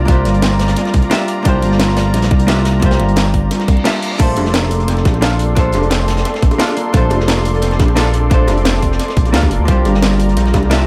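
Echo-heavy and lit by a light reverb in a small room, this short cut from a longer liquid drum and bass piece moves at 175 BPM in a straight 4/4, warm and uplifting in mood, in Bb major. A smooth, nasal synth bass sits up front with a fast attack, sustained notes and vibrato, while a detuned sawtooth pad holds soft-attack chords under chorus and sidechain pumping. A dark, clean hollow-body jazz guitar adds compressed, picked accompaniment through analog delay, and a ringing concert harp plays fingerpicked arpeggios in the background, trailed by dub echo. The drums layer a tight, tape-tinged electronic kick, a produced garage kit with a cracking snare, crash, hi-hat and rim click, and a saturated, gritty breakbeat kit with a rolled-off top sitting further back, both kits fed through analog delay. A reverse cymbal rises from 3.6 s to 4.2 s as the kick briefly drops out, the harmony shifts from C9sus4 to Bbmaj9 at 4.2 s, and very quiet, high-tuned bongos with hard hands join from 4.4 s, sounding distant in a large room.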